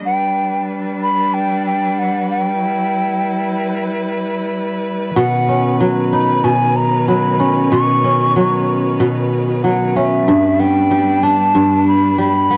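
Folktronica at 94 BPM with a delicate, pastoral mood, opening on distant, bowed string quartet chords with soft attack, portamento and vibrato, softened by a low-pass filter, while a mellow, hollow jazz flute carries the melody high above with airy chiff, gritty 12-bit sampler texture and tape echo. A barely audible, tape-warm cabasa ticks underneath, and from 5.2 seconds an up-front, ringing kora enters with crisp fingerpicked arpeggios, also treated with tape echo. The chords move from G to Badd9 and back to G, all captured in a dry, close 1970s-style small-room sound.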